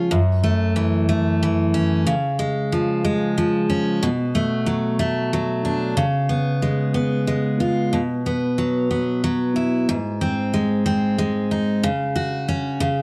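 A slow 6/8 pulse at 62 BPM, counted in dotted quarters, carries this melancholic, dramatic pop excerpt in F# minor, played by a lone picked steel-string acoustic guitar that sits up front with a bright, full-bodied jumbo tone spanning F#2 to F#4. Over 13.0 seconds it moves through F#m7, C#, Bm7, C#7, Bsus4 and G# before resting on F#5/C#. Light reverb and a dark production frame the guitar.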